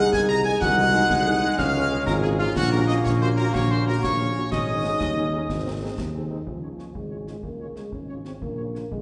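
A festive, rousing military-style march for wind band in a straight 6/8, cut from a longer piece, with a bright trumpet section carrying the melody over a mellow euphonium and a pure, tongued piccolo on second lines, tight trombone chords, a smooth-topped tuba up front on the bass, and a very quiet, distant French horn section in accompaniment. Concert snare, bass drum and dark clash cymbals sit close and dry in the background, while the winds bloom in a wet recital-hall reverb with softened highs. The piccolo drops out at 5.9 s and the trombones at 6.3 s, just before a new section begins at 6.5 s.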